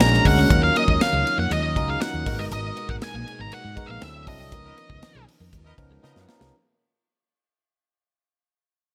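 This polished 1980s jazz-funk pop fragment, urban and nocturnal in mood, opens with most of the band already playing under a fade-out. A dark, up-front octave-fuzz lead guitar carries the melody, while a barky tine electric piano, lightly overdriven through a combo amp with subtle chorus, supplies accompaniment. Underneath, a round, amped fretless bass and a tight funk kit of hi-hat, kick, snare and ride, dry and pumping with gated reverb, keep a straight groove. A twangy, slightly broken-up electric guitar plays a riff in the background with ensemble chorus, and a lush sawtooth string machine holds very quiet sustained chords over harmony that moves from Bb7alt through Ebm9 and Abm9 to D9 and Db13. A distant horn section with light vibrato and octave doubling adds a faint second line from 4.6 seconds as the band hits an accent, and a drum fill closes out the bright, small-room digital mix at 6.0 seconds.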